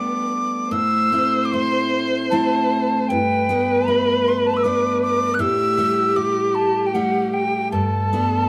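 In a loose, rubato three-beat lilt with uneven beats, this Celtic slow air unfolds in a haunting, mournful mood. A metal mid whistle carries the melody up front, its breathy, mellow tone shaped by vibrato, a soft attack and expressive phrasing. Beneath it, a single bowed viola traces a second line with a boxy, warm voice, leaning on vibrato and portamento. A picked steel-string acoustic guitar, bright and full-bodied with a jumbo resonance, sits up front as accompaniment, moving through Gadd9, Am and A7sus4 harmonies. All three play together from 0.0 to 8.5 seconds, heard as a band performing live in one room, wrapped in a moderate stone-room reverb that lends the fragment of a longer piece a lingering air.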